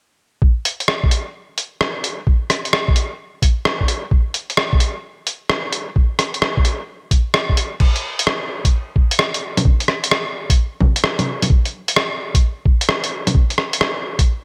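A swung 16th-note groove at 130 BPM in 4/4 drives this rainy, nocturnal future garage fragment, cut from a longer piece. A thumpy, pitched-down electronic kick opens at 0.4 s, joined at 0.7 s by a muffled, compressed lo-fi sampler-style kit of bongos, crash cymbal, hi-hat and rim click dressed in gated reverb, both parts sitting up front with a tape-warm grain and small room ambience. The bright 1980s-style digital production carries light reverb, and the music moves into a new section at 7.8 s.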